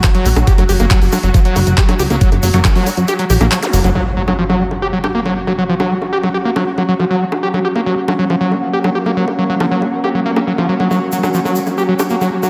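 A driving 138 BPM psychedelic trance pulse in 4/4 opens on a knocking, overdriven kick, bright-hatted bongos, handclaps and a grainy egg shaker, with a punchy, funky analog bass plucking beneath until the kick drops out at 3.1 s and a zap and impact enter from 3.6 s, the impact landing at 4.0 s. Over this an aggressive, squelchy acid line screams with distortion, chorus and diffuse delay, backed by a tense swarming drone in F# major, a very quiet juicy blip pluck, and from 4.4 s a warbling, nostalgic tape-like pad. The intense, dreamy mix is soaked in plate reverb, with the drone, acid line and pad pumping to the sidechain.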